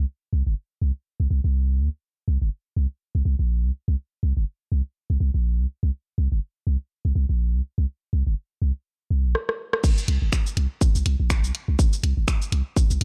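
The production is dark and warm, with very little reverb around it, giving this short cut from a longer minimal techno track a sparse, clinical mood. A deep sine sub bass holds the floor on its own from the opening second, its fast, pitch-dropping attack sitting up front and sustaining underneath, while sidechain pumping makes it breathe in a steady 4/4 pulse with a slight swing on the sixteenths. At 9.3 seconds a filtered house kit arrives with a short fill of finger snaps, rim clicks, shaker, hi-hat and a crash, the bright hats softened by low-pass filtering and touched with studio reverb. The drop lands at 9.8 seconds, when a punchy, layered electronic kick joins the bass near the front of the mix. From there, bass, kit and kick carry the groove together to the close.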